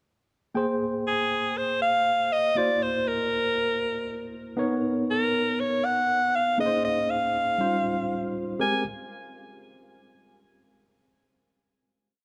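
Bathed in a moderate plate reverb, this short, upbeat and glossy pop piece pairs a worn, slightly out-of-tune tine electric piano, lightly overdriven and thickened by lush chorus as if heard through built-in speakers, playing held drop-2 chords with grace notes, with a punchy, forceful alto saxophone whose bright, vibrato-laden tone and smooth top carry a motif-based, song-like solo melody from 1.1 s to 8.8 s, just past the arrival of the final chord at 8.6 s.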